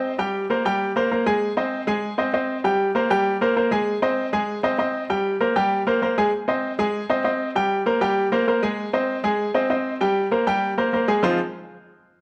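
A straight 4/4 at 196 BPM gives this short, fiery and danceable Latin cut its pulse, carried entirely by a solo upright piano, bright and woody with audible action noise and short sustain, placed up front in a moderate large-studio reverb as it alternates between C5 and Ab chords across two sections before settling on Fm7 at 11.2 seconds.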